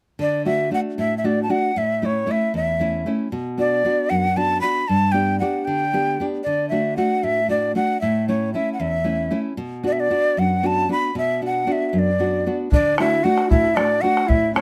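This is a melancholic, earthy Andean folk excerpt at 77 BPM in 6/8, with a breathy, bright quena carrying the melody up front, its crisp, chiffy attack and expressive vibrato set over a fingerpicked nylon-string guitar. The guitar's deep classical tone and finger squeaks sit close, moving through D, A, Bm and G. At 12.7 seconds, a distant, mellow tenor recorder joins with a tongued, straight-toned second line and a dark bombo sounds from a live room, both continuing to the cut at 14.6 seconds, with light reverb and close, detailed miking throughout.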